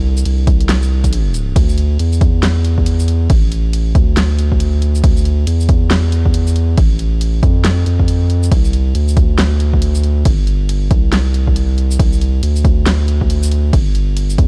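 A dark, cavernous digital ambience surrounds this deep dubstep excerpt, a swung half-time drop cut from a longer piece. A thick, saturated sub bass with a sine core sits up front from the start, while a moody, detuned sawtooth pad with chorus lingers barely audible until 1.6 seconds, and a punchy, layered electronic kick enters at 0.5 seconds. A deep house drum kit sits lower in the mix, adding crash cymbal, hi-hat, shaker and a fat snare.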